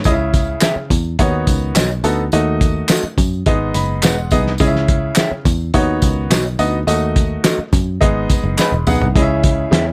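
Uptempo 1960s-style soul with an urgent, passionate mood, built on a cloth-damped, thuddy drum kit with a fat snare, a tight kick and a gritty, muffled top, over a dark, round picked electric bass and a clear, intimate baby grand piano whose action noise can be heard. Slightly broken-up, lo-fi electric guitar stabs from a small old amp and a small-room layer of tambourine, maracas and group handclaps fill out the groove as the minor-key progression cycles, with piano fills starting at 3.5 s and a drum fill at 8.6 s. At 9.1 s a very quiet, fat tonewheel organ slips in with key click and a fast rotary speaker, all under light reverb in this excerpt cut from a longer piece.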